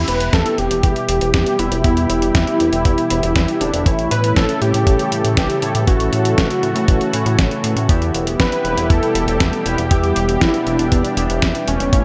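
A thick, warbling sawtooth lead with vibrato, cassette-tape wear and digital delay opens this nostalgic, melodramatic italo disco excerpt alongside mellow, glossy polysynth stabs carrying vintage 12-bit grit and a nasal, tube-saturated synth bass. A compressed sampler-style kit of hi-hat and fat, gated snare follows at 0.1 s, a thumpy electronic kick joins at 0.3 s, and a lush detuned pad enters at 0.5 s, all in a straight 4/4 pulse over Em and A chords in a small, fairly dry room.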